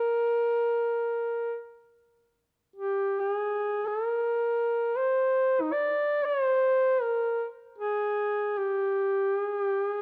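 Heard through worn, warbling old cassette tape with a drifting pitch and a moderate recital-hall reverb, this solemn, mournful Caucasian folk lament in free time features a mellow, smooth-topped solo duduk playing up front between Eb4 and D5 for the full 10 seconds of a passage cut from a longer piece.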